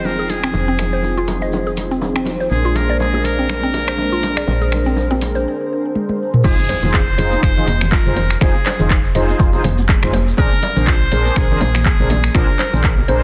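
Afro house at 122 BPM in F dorian, earthy and spiritual in mood, with a swung sixteenth-note feel and chords moving between Fm7 and Bb9 in this short cut from a longer piece. A muted trumpet carries the jazz-style solo melody, its tone buzzy, thin and breathy with light vibrato and delay, over mellow synth brass stabs that sound detuned and sawtooth-edged with vibrato, chorus and sidechain pumping. A woody FM bass with a fast, decaying attack anchors the low end, while a round, mallet-like synth pluck plays arpeggios with chorus and delay, and a smooth analog pad holds sustained chords with tremolo until 5.4 seconds. An afro-pop drum kit with metallic hats, tape-tinged tone and a soft-clipped snare joins almost at once, alongside low-tuned bongos with soft hands and a grainy tube shaker, as a filter sweep on an analog polysynth builds toward a drum fill. The drop arrives at 6.4 seconds, bringing a punchy, overdriven electronic kick, a very quiet electronic impact and bright congas played with hard hands. 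The mix is dense and heavily limited, with light reverb.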